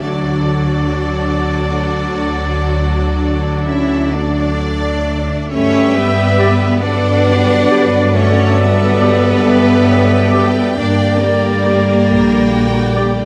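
An up-front double bass section, rich and focused with vibrato, anchors this lyrical, tender slow romantic movement for symphony orchestra, joined in the bass by a smooth cello section. Above them, a clear, distant violin section carries the melody in 12/8 with a rubato feel. A second violin section, a solo oboe and a dark, roomy clarinet add second lines, while lush violas fill in the accompaniment and a soft-attacked French horn section holds sustained chords in the background. At 5.5 seconds the harmony moves from D to Gmaj7: a pure, straight-toned flute adds another second line, a vintage-sounding trombone section joins the sustained chords, and a mellow trumpet adds stabs from the background. The chord shifts to Gm near the close, and the passage breaks off at 13.2 seconds as part of a longer piece, with light reverb around the ensemble.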